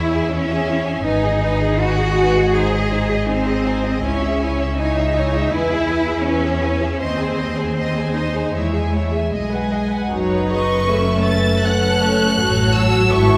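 Cinematic and hopeful, this unhurried, rubato excerpt sets a lush, expressive violin melody over a clear second violin line, smooth violas, clear cellos and an up-front, focused double bass section, all bowed with vibrato on a reverberant scoring stage heard from further back, before a mellow French horn section enters at 10.1 s with sustained chords.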